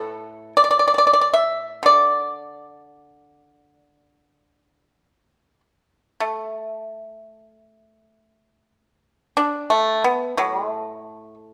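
The rhythm floats in free rubato over a loose 4/4 pulse, hovering between 53 and 61 BPM, so the phrasing breathes rather than marches. This serene, elegant Chinese traditional piece features a solo pipa, heard alone from the start at 0.0 s through the close at 11.5 s, ranging from a low A2 up to E5. Played with fingerpicks, the pipa sounds acoustic, percussive and up front, its close, dry attack giving each plucked note a crisp edge. A moderate recital-hall reverb surrounds the instrument, lending the room a graceful sense of space. The passage moves into a second section at 6.2 s, and the recording, tuned slightly high to A4 = 441 Hz, is a short cut from a longer piece.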